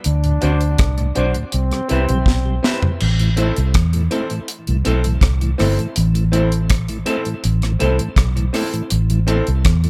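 A hypnotic, meditative stretch of roots reggae, cut from a longer piece, moves at 81 BPM in a straight 4/4 with an A dorian colour, shifting from D7 to Cmaj7 before settling on Am at 3.0 seconds. A dry, deep drum kit sits up front with a tight kick, high-tuned snare, rim clicks, toms and dark cymbals, playing a fill just before the change at 3.0 seconds. The foam-muted, fingered electric bass is round, punchy and prominent, anchoring the low end throughout. A clear trombone with light vibrato and tape echo appears only briefly at the start, ending by 2.6 seconds, while a mellow tonewheel organ with key click and slow rotary speaker hums underneath. A slightly broken-up, lo-fi guitar bathed in lush chorus and tape echo adds picked accompaniment, and an intimate, boxy grand piano with audible action noise and long sustain punctuates the groove with stabs. The sound is close and dry, with little reverb.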